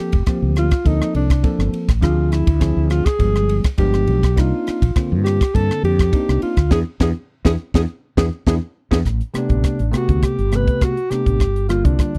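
A mellow alto saxophone sings the melody over bell-like tine electric piano from the start, with a round, dark fretless bass and a crisp, punchy drum kit joining almost at once in this slick, driving electric jazz fusion passage cut from a longer piece. The sax plays with vibrato and scooped notes, while the high-tuned snare, hi-hat, ride and rim clicks sit up front with the bass over jazzy chords such as Gm11, G7b9 and Cm9. The band hits an accent from 6.7 seconds, crowned by a drum fill at 7.9 seconds, before moving to a new section at 9.1 seconds, all captured in a dry, close 1970s-style studio sound.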